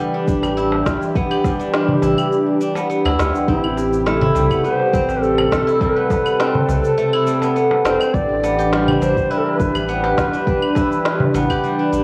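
Earthy and unhurried, this organic downtempo excerpt opens with a silvery steel-string zither ringing out fingerpicked arpeggios up front, laced with 12-bit sampler grit, over a smooth, detuned analog pad whose sustained chords carry chorus, tremolo and sidechain pumping. A round, dark analog bass that also pumps sits beneath overdriven electronic drums: a deep kick plus shaker, claves and a woody snare, re-recorded in a large room, with a clay-shelled darbuka tucked into the background. At 3.5 seconds a mellow, airy low wooden flute in the Native American style enters with the melody through tape echo, and the whole mix sits in a wet hall reverb with the worn, warbling pitch drift of old cassette tape.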